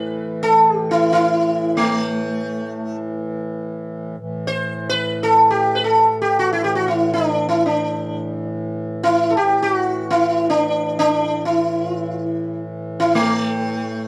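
A buzzing, plectrum-plucked sitar sings a longing, introspective Hindustani classical melody up front, its sympathetic strings shimmering, over a reedy, breathing pedal harmonium drone that sits lower in the mix, close-miked and dry, in this live one-room excerpt touched by light reverb.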